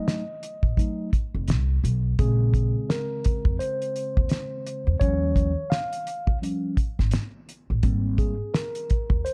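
A mellow tine electric piano, clean and heard through its built-in speakers, leads this cool jazz-hop fragment at 85 BPM from the first second, moving through F7b9, Bbm7, Eb9 and Abmaj9 over a dry, cloth-damped drum kit with a fat snare and tight kick, plus a woody, thumpy pizzicato upright bass on gut strings that joins at 0.6 seconds, the whole mix set in a dark, warm small room with a swung 16th-note feel.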